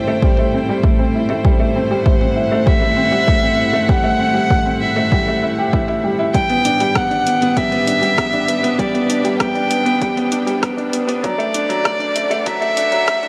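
A huge ambient reverb with a long tail hangs over this hypnotic, cinematic piece of piano-and-strings electronica, and a filter sweep runs through the whole build-up of this short passage cut from a longer piece. Up front, a dark, woody solo violin carries the melody with vibrato and a smooth top, while a chamber string section sits intimately in the background, holding soft-attacked sul tasto chords that pump against the beat. An upright piano with a short, wooden-toned sustain repeats a riff through a delay, close to the listener alongside the violin. A punchy, layered electronic kick arrives at 0.2 seconds, and a produced deep house kit of hi-hat, rim click and toms joins at 0.4 seconds, both treated with studio reverb. The harmony moves from Am7 to G and then Dadd9, keeping the mood suspended and building in a straight four-beat pulse.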